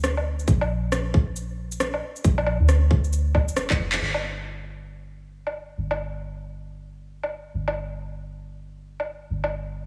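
A soft, round 808-style bass and overdriven electronic percussion of rim click, shaker, woodblock and handclaps open this nocturnal, melancholic future garage excerpt at 136 BPM with a 16th-note swing, joined by a tight, overdriven electronic kick from 0.5 to 3.8 seconds, while a drum fill and band accent near 4.0 seconds lead into a second section where the deep, dark, sidechain-pumped, tube-saturated bass and percussion continue up front in a small, lightly reverberant room.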